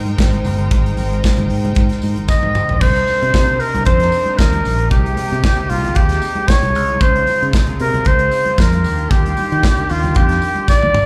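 This disco excerpt opens on sustained chords from a clear, biting string section and a bright, growly fingered electric bass, with an acoustic drum kit, soft-handed congas and a jingly tambourine joining within the first fraction of a second at 114 BPM in a straight 4/4. The mood is glamorous and joyful, moving through Abmaj7, Cm7, Dbmaj7 and Ebmaj7 harmonies. The polished drums sit up front with a tight kick and medium-tuned snare, while the congas and tambourine stay very quiet underneath. As a drum fill begins at 2.3 seconds, a breathy flugelhorn enters with the solo melody, playing in a vintage jazz style with vibrato and scooped notes, up front with a slapback echo. The strings keep a smooth top and light vibrato as a second drum fill arrives at 10.7 seconds near the cut. The whole sounds like a live gig heard through the venue's PA, carrying some club reverb.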